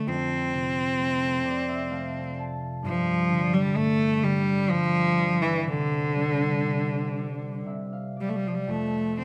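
A close, detailed sound with light reverb frames this haunting, longing Celtic slow air in 3/4 at a rubato 58-66 BPM, where a clear, smooth, even solo bowed cello sings the melody up front with vibrato between D3 and C4 while a ringing, thumb-plucked concert harp accompanies across a broad range over chords moving from F through G5 and Csus2 to F5, adding fills at 1.0 and 7.1 seconds in this brief cut from a longer piece.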